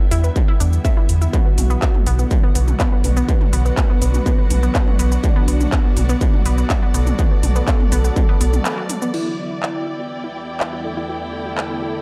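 A distorted, layered electronic kick drives this hypnotic melodic techno passage from 0.4 s, with a round, deep analog bass up front, both falling away just before a short break at 8.7 s, while a techno kit of metallic hats, shaker, handclaps, toms and crash cymbal pumps underneath. Lush, punchy pluck arpeggios with digital delay and a thick, detuned lead melody sit over sustained chords from a morphing wavetable pad with phaser and a smooth, expressive studio string section that fades in, all pumping to the sidechain. At 10.2 s a tense, string-like drone with vibrato and reverb enters low, rounding off a dark production with light reverb.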